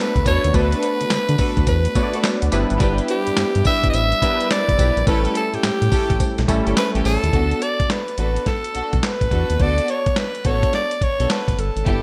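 Bouncy and flirty, this new jack swing R&B passage moves at 106 BPM in D major with a swung 16th-note feel, led up front by a breathy, raspy alto saxophone with scooped notes and light vibrato. A gritty, compressed sampler-style drum kit with thumpy kick, handclaps, hi-hat, snare and tambourine sits forward over a round, deep analog bass, while lush bowed string stabs, a very quiet metallic cowbell until 7.2 s, and chorused, detuned analog keys with a filter sweep fill in until the keys stop at 7.4 s. Bright 1980s-style digital production and moderate plate reverb frame the chords as they move through D6, G6 and A7.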